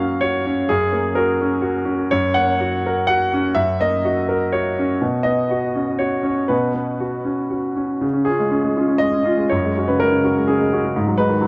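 In a rubato 3/4 at 124 BPM, this wistful, melancholic neoclassical minimalist piano excerpt, tuned to A4 = 442 Hz, features a solo concert grand, polished and up front with deep bass across F#2 to F#5, moving from F# to Bsus2 before shifting at 8.0 s through C# and F#sus2 to G#m7, all colored by tape echo on the piano, light reverb and the worn, warbling pitch drift of old cassette tape.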